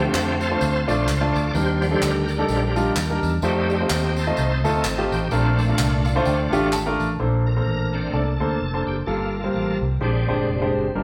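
Soulful and uplifting, this uptempo gospel cut at 128 BPM swings in Bb major as a bright, shouting tonewheel organ with key click, slow rotary speaker and chorus vibrato takes the solo over sustained chords, backed by a natural, long-sustaining baby grand piano that adds a fill at 5.8 seconds, a dark, round fingered electric bass up front, and group handclaps with tambourine that stop at 7.1 seconds, all played live together in a reverberant stone room.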